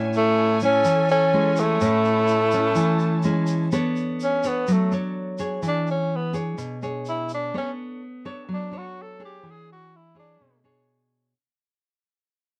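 A straight 4/4 bossa nova groove at 126 BPM in A major sets a sunny, romantic mood, with a full-bodied, fingerpicked nylon-string guitar up front, finger squeaks audible, carrying Amaj7 into alternating Bm9 and E6 chords, while a breathy tenor saxophone leads the melody in a jazz style with subtone, scooped notes and light vibrato and moves into a solo at 3.7 s as the piece fades out; in the background a lush bowed violin section holds sustained chords and a pure, hollow small flute group plays a second line, both only briefly at the start, a grainy tube shaker ticks along until 7.5 s, and light reverb sits over a worn, warbling cassette-tape pitch drift in this cut from a longer piece.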